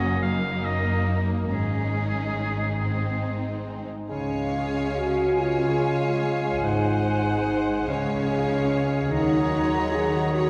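Classical slow romantic movement for symphony orchestra, solemn and elegiac, in 6/8 at 47 BPM with a rubato lilt in Db major, where a soft-edged violin melody floats in the background over rich violas, cellos and focused double basses, while a bright oboe, a clear second violin line and quietly ringing harp arpeggios join from the start; at 4.1 s a pure-toned flute section, a distant clarinet, a bassoon and mellow sustained French horn chords enter, all bathed in a long, wet church reverb, in an excerpt cut from a longer piece.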